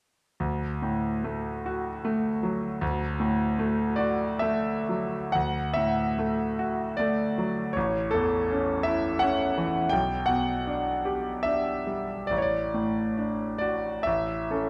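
In a lilting triple metre that breathes with flexible rubato, this passage from a longer romantic nocturne unfolds at an unhurried, gently shifting pace. A solo concert grand piano carries the music from 0.4 to 14.7 seconds, ranging from A1 in the bass up to G5. Its tone is bright and brilliant yet natural, with a deep low register. Close, detailed microphones set the piano up front, while a moderate recital-hall reverb of 1.8 seconds surrounds it with a sense of space. A new section begins at 5.3 seconds, and the mood stays tender and serene throughout.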